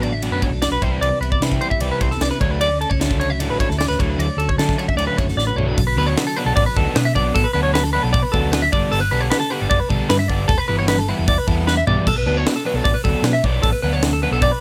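Up-front clean electric guitar arpeggios, warm and lush with chorus, ring out in this wistful, intricate math rock and midwest emo passage, over a double-tracked crunchy overdriven riff, a dark, round hollow-body fingered bass, a crisp, airy fusion kit with a high-tuned snare, punchy kick and fills at 5.4 and 11.7 seconds, and a bright, twangy twelve-string guitar in the background that drops out at 7.2 seconds, all in a dry, polished studio sound.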